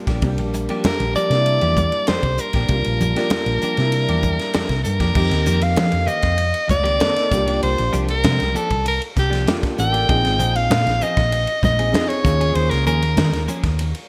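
Bright 1980s-style digital production bathed in hall reverb frames this soaring, funky electric jazz fusion excerpt, where an edgy soprano saxophone with vibrato takes the up-front solo from 0.9 s over a round, punchy hollow-body fingered bass, a tight funk kit with high-tuned snare heard from a roomy distance, ringing congas in the background, a dark, boxy grand piano with lush chorus and long sustain, and clean, compressed electric guitar stabs moving through ninth sus4 chords that shift from C9sus4 to F9sus4 at 5.2 s.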